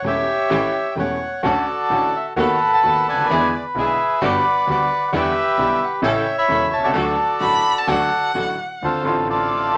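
A reedy, vintage bandoneon carries the melody up front over a bright upright piano with audible action noise, earthy bowed chamber strings stabbing in the background and a focused bowed double bass, in a passionate, dramatic rubato tango at 130 BPM in D major that moves from A7 through Dmaj7 and Gmaj7 to D, before a dark, close violin with portamento and vibrato enters up front as a second line at 7.4 s, all in a wet studio ambience.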